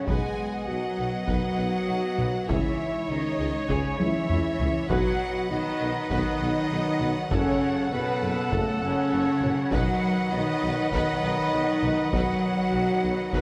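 Awash in a wet scoring-stage reverb, this heroic, epic orchestral film-score excerpt at 100 BPM in 4/4 sets a rich violin melody over a background violin line and a distant large flute ensemble, with a clear viola accompaniment, mellow French horn and dark, very quiet trombone chords, clear trumpet stabs, a bass of smooth cellos, portamento double basses and a punchy tuba, and a compressed, saturated taiko ensemble struck with heavy sticks that plays a fill from 4.0 to 4.9 seconds, all moving through B, C#m, B, F#m and back to B.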